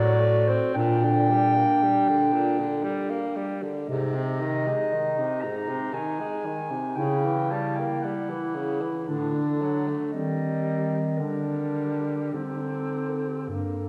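Elegiac and solemn, this classical excerpt for single-reed quartet moves at a slow, rubato 51-59 BPM in 3/4, set in G minor and cut from a longer piece. A dark, distant clarinet carries the melody while a second clarinet with a smooth top traces an inner line; the tenor saxophone, up front with vibrato and a vintage tone, supplies accompaniment, and the roomy bass clarinet anchors the low end. The ensemble sits back in a wet concert hall, its reverb lingering, as the harmony passes through a diminished chord near 7.0 seconds before settling toward the close at 13.9 seconds.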